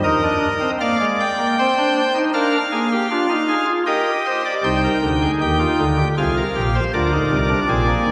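In a straight three-four pulse, this short, driving and solemn baroque-style four-part fugue is played on a solo pipe organ with a nasal cornet stop, its chiff and tremulant sitting up front as the voices span Ab1 to G5 and ring into a wet church reverb with a 3.1-second decay, the passage cut from a longer piece.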